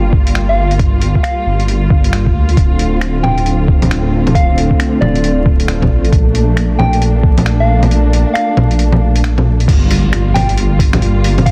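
Distant bowed strings with 12-bit sampler grit and sidechain pumping hold sustained chords over a dark, rumbling detuned saw bass sitting up front, opening a wistful, nocturnal future garage groove at 135 BPM with a swung 16th feel, moving through Gm7, Dm7 and Bbmaj7. A muffled, pitched-down kick thumps alongside a tape-warm sampler kit of bongos, finger snaps, hi-hat, crash and a softly clipped snare, while a round, keys-like FM lead with chorus, cassette tape colour and analog delay sings gently on top. The kick drops out from 7.9 to 9.7 seconds, after which a very quiet electronic impact arrives back on Gm7, all under light reverb, vinyl crackle and a dense, heavily limited master.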